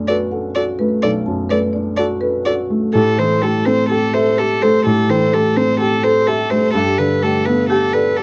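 A sul tasto violin carries the melody up front, its airy bow and soft attack giving a pure, floating line over this longing, reflective neoclassical passage for piano and strings, cut from a longer piece and moving with a rubato feel. Close beside it, a felt-muted upright piano supplies soft, mellow accompaniment with short sustain, intimate and present from the first moment. Further back, a single viola adds a dark, lightly vibrato-touched support in its own hushed sul tasto voice. A marimba with medium hard mallets plays woody, percussive arpeggios from the background, its boxy small-room tone thickened by a slapback echo. The harmony drifts from Bm7 to Am7 at 2.9 seconds and settles on Gadd9 at 6.7 seconds, all framed by light reverb in a dark, warm production.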